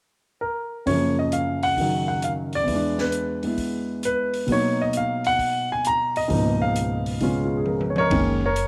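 Relaxed and swinging, this short jazz piano trio passage moves at 132 BPM in 4/4 with a lilting swing on the eighth notes, set in F# major. A polished, up-front baby grand carries the melody from 0.4 seconds, ranging from the low register up to A#5 and sitting clearly ahead of its partners. The open acoustic drum kit joins at 0.9 seconds, placed further back, with dark cymbals on hi-hat and ride, a high-tuned snare, a punchy kick and toms, and it closes the phrase with a fill at 7.7 seconds. Over a progression of F#maj7, E7, Bmaj7 and C#13, the music settles onto F#69 just as a woody, thumpy upright bass on gut strings enters at 8.1 seconds on a low F#. Light reverb and a small room ambience give the trio an intimate feel in this brief cut from a longer piece.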